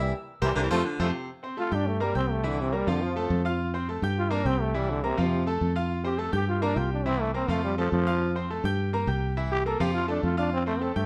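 A brisk, straight 4/4 pulse drives this danceable, sunny Latin clip, cut from a longer piece. It opens with a tight band accent, where a punchy, mellow trombone section sounds from a roomy distance, joined at 0.6 seconds by a breathy baritone saxophone carrying a brief second line. From 1.6 seconds a growling trombone takes the solo, up front and raspy, with gritty scooped notes and vibrato in a pop style. Under it all, a brilliant, polished concert grand piano lays down accompaniment with deep bass, while a round, foam-muted fingered electric bass sits dark and direct in the low end. The chords cycle through G minor, C7 and F, and a large studio reverb gives the band a moderate sense of space.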